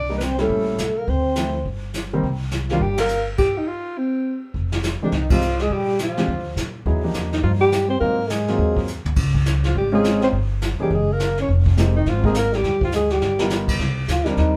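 A brisk swing at 208 BPM in 4/4 drives this late-night small-group jazz excerpt in C minor, its eighth notes lightly swung. The dark alto saxophone carries the melody up front with a subtoned, scooped, vibrato-laden voice and a smooth top, bathed in plate reverb, and falls silent at 13.5 seconds while the rest of the band carries on. Beneath it, a trombone in a bucket mute plays a veiled, mellow second line that sounds distant and roomy, while a woody pizzicato upright bass anchors the low end. A grand piano comps throughout apart from a gap before it returns at 5.0 seconds, and a vintage kit played with brushes adds dark cymbals, a punchy kick and a rolled-off top, with band accents and drum fills marking the phrases. The harmony moves from an opening turn through a stretch of rich extended chords before settling on Cm9, all heard from further back in a moderately reverberant studio.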